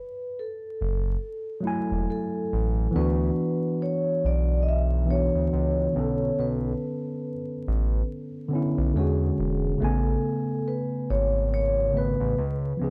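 A metallic, ringing vibraphone played with soft mallets opens this hazy, melancholic lo-fi hip hop excerpt at 0.0 seconds, its slow motor vibrato softened by a low-pass filter, before a smooth, saturated synth bass built from sawtooth and square waves enters up front at 0.8 seconds with a fast attack, sustained notes and a moving notch. At 1.6 seconds a mellow, clean tine electric piano joins, also up front, treated with cassette tape character and a low-pass filter. The relaxed 70 BPM groove swings gently in 4/4 through chords such as F#m9, D69 and Amaj9, all set in light reverb within a dry, gritty recording dusted with vinyl crackle.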